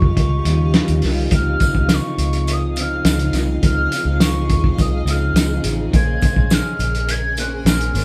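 Indie bedroom pop in Db major at 104 BPM, sunny and nostalgic, with a straight 4/4 feel and the sense of a band playing live together in one room. Up front, a cloth-damped drum kit with a fat snare, tight kick and muffled, gritty top sits beside a round, foam-muted fingered bass, while an electric guitar through a small old amp adds slightly broken-up picked accompaniment with a warbly pitch drift over Eb9, Dbmaj9 and Bbm9 harmony. A hollow, woody clarinet-like synth lead carries a high, chorused melody with vibrato above a blurred granular cloud pad, and a jingly tambourine joins in the background at 1.3 s.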